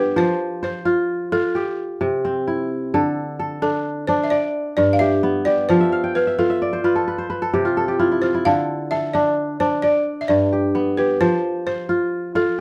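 Ringing, crisp fingerpicked kora arpeggios sit up front in this flowing, reflective West African traditional excerpt in 12/8, adding a fill between 5.7 and 8.5 seconds while a woody, buzzing balafon struck with rubber mallets carries the melody over chords moving through F, C, G and Dm, all heard from further back in a reverberant studio room.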